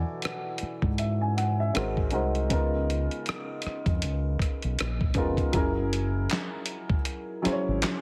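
A swung sixteenth-note feel at 79 BPM in 4/4 sets up a soulful, late-night neo-soul and R&B groove in this short cut from a longer piece. A dusty sampler-style drum kit joins at 0.2 seconds with a thumpy kick, medium-tuned snare, rim click, hi-hat and handclaps, its gritty, tape-warm sound re-recorded in a large room and placed up front. Underneath, a deep dub fingered electric bass plays dark, round low notes, direct and amped. An upright piano adds intimate, woody, slightly detuned accompaniment with audible action noise. The harmony moves through E7sus4, G#9 and C#13 before a new section begins on F#7 at 5.5 seconds, all under light digital reverb and a heavily compressed, radio-like sound.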